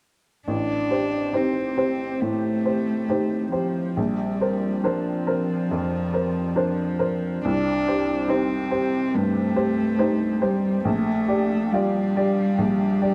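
A dark, bowed cello and a clear, woody upright piano enter together at 0.5 s, opening this reflective, longing neoclassical piece for piano and strings at a rubato 70 BPM in 4/4. The solo cello carries a second line, played sul tasto with vibrato, a soft attack and a smooth top, sitting intimate and close up front. Beside it, the slightly detuned piano plays accompaniment across a broad range and is equally present at the front. From 1.3 s a warbling, tape-like pad sits in the background, holding sustained chords with a slow attack and long release; its detuned square and triangle tones, chorus and built-in reverb give it a mellow, nostalgic, lo-fi character. The harmony moves through Am7b5, Bbadd9, Cm and Gm7/Bb, and the whole passage, taken from a longer work, has the sound of a dry, close 1970s-style studio with light reverb.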